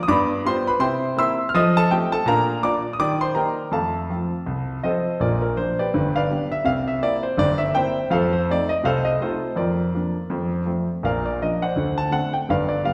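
A brisk, swinging 4/4 pulse at 164 BPM drives this exuberant stride piano passage in Bb major, cut from a longer piece and lasting about 12.9 seconds. A solo concert grand carries it all, its clear, worn tone sitting up front with deep bass and short sustain as it moves through bright dominant-seventh changes, shifting into a new section at 5.2 seconds. The piano rings in a wet recital hall reverb that lends the church-like space a lively glow.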